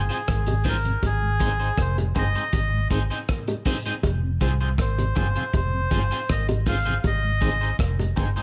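Roots reggae in F minor at 80 BPM, this serious, meditative excerpt cut from a longer piece moves between Fm and Ab as a reedy, breathy melodica carries the melody through dub echo and plate reverb, over a round, foam-muted vintage bass sitting up front. A crunchy breakbeat kit with a tight kick and rolled-off top plays hi-hat, kick drum and rim click, while a twangy electric guitar at the edge of break-up adds phaser and dub echo. From 0.5 seconds a mellow tonewheel organ with slow rotary speaker and chorus vibrato settles into the background, joined by low-tuned bongos struck with hard hands.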